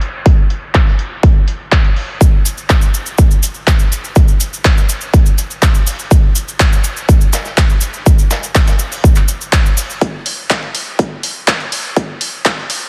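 House groove at 123 BPM in 4/4 with an expansive, dreamy mood, built on a gritty, overdriven soul-sampler kit of hi-hat and snare sitting in the background from the start, a punchy, up-front electronic kick entering just after, and a layered big-room kit of handclaps and hi-hats, along with a grainy acoustic cabasa from 2.2 to 10.0 seconds, all within a heavily compressed, radio-like digital sound, before a build-up takes over at 10.0 seconds in this cut from a longer piece.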